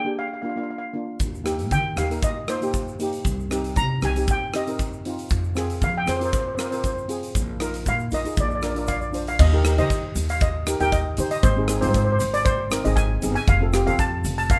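Two steel pans open the calypso together, a shimmering lead pan played up front with medium rubber sticks carrying the melody over a mellow, softer double-seconds pan voicing the chords in Eb major. At 1.2 seconds a woody, thumpy pizzicato upright bass on gut strings joins with a punchy acoustic drum kit of bright cymbals, hi-hat, kick and rim click, while a grainy egg shaker sits in the background. The carefree, festive groove moves at 117 BPM with a light swing, its dry, close sound passing from a first section to a second at 9.4 seconds before the cut ends.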